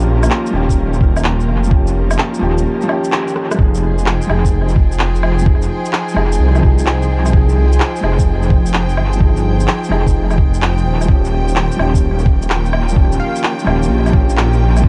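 Nocturnal and melancholic, this future garage passage moves with a swung sixteenth-note feel in 4/4, cut from a longer piece. A bright upright piano with audible action noise and long sustain plays the accompaniment through tape echo, while a lush bowed string section holds sustained chords alongside it, both pumping against the sidechain. A dark, detuned saw bass sits up front with a deep, rumbling, saturated tone. Electronic shaker, woodblock, handclaps and rim click, drenched in dub echo, play from the start, and a muffled, thumpy electronic kick joins them at 0.7 seconds. An airy, breathy wind-like texture hovers very quietly until 3.6 seconds, just after a band accent and a short drum fill mark the turn from Eb9 to Fm7. Near the close, at 13.2 seconds, a catchy plucky unison lead sounds a single brief note in the background through tape echo, in an echo-heavy mix with light reverb and a softened top end.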